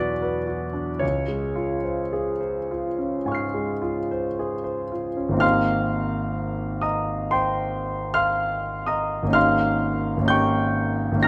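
A clear concert grand piano carries this short, dreamy fragment of a longer impressionist solo piece. It sits up front and intimate in the mix, with audible action noise, deep bass and a polished, long sustain across a range from Ab1 to C7. The serene mood unfolds in Ab major at a slow, rubato 52-65 BPM in 4/4, with the instrument tuned slightly low to A4 = 437 Hz. Lush harmonies drift from an opening E9 to Dbmaj7 at 1.0 seconds, and a new section begins on Abmaj9 at 5.4 seconds. A moderate recital hall reverb gives the piano a gentle sense of space.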